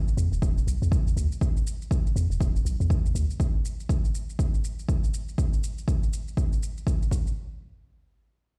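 Afro house at 121 BPM with a 16th-note swing, this earthy excerpt pairs a punchy, overdriven electronic kick sitting up front from 0.4 s with a faint, layered shaker and a deep, boomy 808-style bass that pumps with sidechain and tube saturation until 3.3 s, all heard as if played on a big sound system in a bare room with a large studio reverb.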